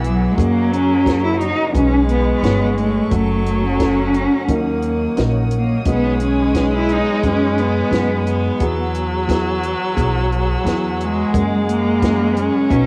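A straight 4/4 pulse at 88 BPM drives this intimate, hopeful acoustic folk-pop ballad in B major, with a dry compact cocktail drum kit of punchy kick, high-tuned snare and hi-hat beside a woody, dark pizzicato upright bass sitting up front. A bowed cello carries the expressive melody from 0.1 s with vibrato and portamento, while a boxy solo viola traces a second line. A felt-muted upright piano, mellow with audible action noise, accompanies in the background as a soft sul tasto chamber string section holds sustained chords over changes such as F#add9, Badd9, F#m and D#m7. Most parts carry a cassette tape coloring within a homely small-room ambience and light reverb, in a passage cut from a longer piece.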